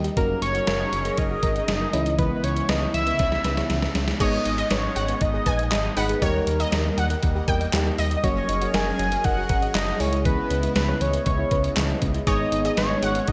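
Synth-pop with a cool, melancholic mood, driven by an up-front detuned 8-bit drum machine with a thumpy kick, handclaps and gated reverb, a drum fill at 3.2 seconds, and a smooth gliding synth bass underneath. A fat analog lead with chorus and delay carries the melody from 0.2 seconds over a swirling phased pad, a glassy, bell-like FM electric piano and a very quiet, soft round pluck playing arpeggios. A lush, bright unison pluck adds a second line from 4.2 seconds, all set in a moderate plate reverb with bright 1980s-style digital production in this excerpt from a longer piece.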